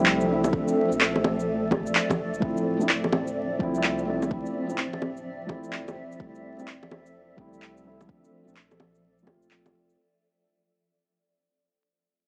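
Up front, electronic handclaps, shaker and bongos drive this ghostly, nocturnal future garage excerpt at 127 BPM with a swung 16th feel, joined from 0.5 s by a deep, layered electronic kick. A cloudy, evolving granular pad holds blurred chords through Fmaj7, Bbmaj7 and Dm9, while a felt-muted upright piano with audible action noise plays soft, dark accompaniment through tape echo and a low-pass filter. A round sine sub bass with tube saturation sits in the background, piano, pad and bass all pumping to the sidechain, and the gritty, small-speaker sound carries vinyl crackle, light reverb and digital ambience across a fade-out spanning the full 10 seconds.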